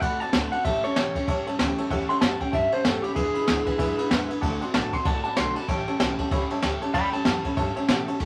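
A twangy, slightly broken-up electric guitar through a small old amp carries a clean solo from 0.0 to 8.2 seconds in this retro, rowdy rockabilly excerpt, ranging from G4 to C6 with a fingered, lo-fi bite. Beneath it, a full-bodied dreadnought acoustic guitar picks out the accompaniment while a jangly, metallic tack piano adds bright, percussive vintage color high in its range. A woody, thumpy upright bass with gut strings sits in the background, plucked dark and low, and a jazz brush drum kit sits up front with a boomy kick, high-tuned snare and dark ride cymbal in an airy, polished studio room. The groove runs at 190 BPM in 4/4 with a 60% swing on the eighth notes, moving through D7, A7 and E7 in A mixolydian. A moderate club reverb and a layer of vinyl crackle give the short clip its aged, live-room character.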